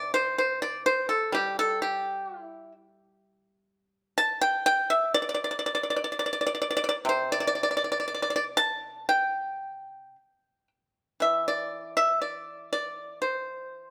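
A solo pipa carries this short fragment of Chinese traditional music, its bright, percussive tone sitting up front and close to the listener. Played with fingerpicks, the instrument sounds dry and detailed, spanning a range from C3 to A5 in the G zhi mode. The mood is elegant and flowing, with a rubato feel that drifts between roughly 54 and 65 BPM over a loose 4/4 metre. The opening passage runs until about 11.2 seconds, when a new section begins and carries on until the cut at 13.9 seconds. Light reverb adds a touch of space around the intimate, closely captured sound.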